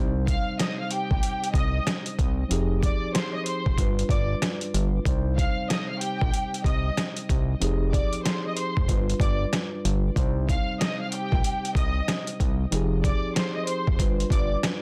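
Tough and reflective, this boom-bap hip-hop cut moves at 94 BPM in C harmonic minor with a 16th-note swing, circling Cm, Fm7 and G7 across its 14.8 seconds. A gritty, pitched-down sampler drum kit with a thumpy kick and medium-tuned snare sits up front beside a fat, detuned sawtooth analog bass, while a mellow tine electric piano, coloured by cassette tape and plate reverb, supplies the chords. A lush, bowed symphonic violin section carries the melody with vibrato and a smooth top, its sound touched by tape echo, all under a light reverb and a dense, heavily limited modern master.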